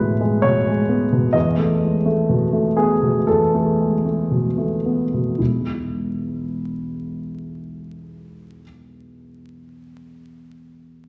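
A grand piano, intimate and up front, carries this brief solo excerpt from a romantic character piece in E major. Its tone is close and warm, with audible action noise and a short sustain, and its range reaches from E1 up to D#5. The mood is passionate, the 4/4 pulse moves freely in rubato between 53 and 66 BPM, and the playing slows over the opening 5.4 seconds. The harmony moves from E to B7 over an E bass at 1.3 seconds, then settles back on E at 5.4 seconds as a new phrase begins. A wet recital-hall reverb surrounds the piano, and a vinyl crackle gives the sound an aged patina.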